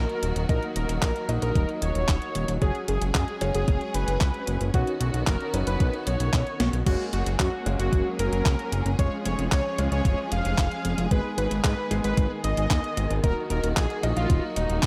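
Italo disco at 113 BPM in a straight 4/4, nostalgic and melodramatic, moving from Ebm through suspended and add9 colours before a change of section at 6.9 seconds, marked by a drum fill and a band accent at 6.6 seconds. A bold, bright detuned sawtooth unison lead carries the melody with vibrato and digital delay, over lush, distant bowed symphonic strings holding sustained chords and clear grand piano stabs sitting in the background. Underneath, a fat, up-front analog bass with a filter sweep drives alongside a thumpy overdriven electronic kick that enters at 0.5 seconds and a clean, overdriven 12-bit drum machine supplying snare, handclaps, hi-hat and crash, all set in a digital ambience in this excerpt from a longer piece.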